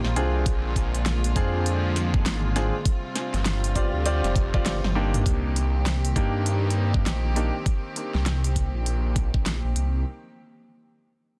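Gritty and swaggering, this glitch hop cut from a longer piece moves at 100 BPM in 4/4 with a swung sixteenth feel in C minor. A swirling, thick detuned saw bass sits up front with phaser and tube saturation, while a rich chamber string section holds sustained chords underneath, its light vibrato and smooth top pumping against the beat. A clear baby grand piano punctuates with stabs roughened by vintage 12-bit sampler grit, digital delay and sidechain pumping, running from 0.2 to 7.5 seconds. The pop drum kit brings a fat snare, crisp hats and toms in a small room, joined by a knocking, layered electronic kick that enters at 0.5 seconds. The opening drop moves from Bb7 to G7sus4, then at 4.7 seconds the band hits an accent, the kick drops out and a drum fill leads into a Cm7 passage at 5.3 seconds where a filter sweep works over the bass. The mix is dry, with a dense, heavily limited modern master.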